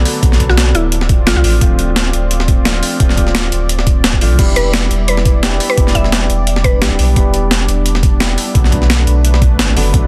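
A dark, mellow grand piano, a smooth detuned sawtooth pad with chorus, 12-bit sampler grit and sidechain pumping, and a deep sine-and-triangle sub bass with tube saturation open this dreamy, rolling liquid drum and bass excerpt in E minor at 173 BPM, joined at once by a gritty, compressed breakbeat kit with an up-front snare and a thumpy electronic kick, while a woody, round FM mallet pluck with chorus and tape echo carries the melody in brief phrases from 0.5 and 4.6 seconds over Bm7, Dm7 and Em7 chords in a dry, dense, heavily limited mix.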